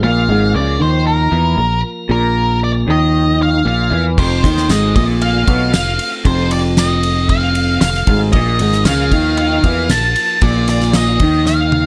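A straight, even 4/4 pulse carries this hypnotic, kaleidoscopic psychedelic rock passage, cut from a longer piece. From the start, a fingered electric bass sits up front with a direct, amped tone. Alongside it from the outset runs a dark, slightly broken-up riff on electric guitar through a small old amp, which turns through a rotary speaker and has a lo-fi grit. A piping tonewheel organ holds scooped, clean chords with audible key click in the background, its rotary speaker stopped. Over these, an octave-fuzz lead guitar carries the melody up front, distorted and coloured by slapback echo, as the harmony moves from Bb5 to F and back. A dry, polished 70s drum kit enters at 4.2 seconds with a fat snare, tight kick and dark cymbals, and a jingly, distant tambourine follows at 4.7 seconds. The drums close the passage with a fill at 11.5 seconds, all within a small room reverb.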